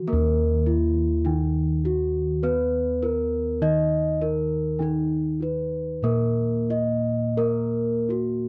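This dry, close recording has a 1970s studio feel, with only a light reverb around the bronze instruments. It is a short excerpt of Javanese gamelan in a hypnotic, shimmering mood, cut from a longer piece, moving at 80-102 BPM in a straight 4/4 in Eb pelog. A bronze metallophone carries the melody between Eb4 and Eb5, its ringing tone softened by padded disc mallets into something mellow and mid-forward, sitting up front. Beneath it, a second bronze metallophone plays the accompaniment an octave lower, struck with a wooden mallet for a ringing, mid-forward tone, and sitting a little quieter in the mix. Bossed gongs hold the bass from Eb2 to Cb5, their round, beating bronze tones struck with padded beaters and placed up close. All three parts play together throughout the 8.5 seconds.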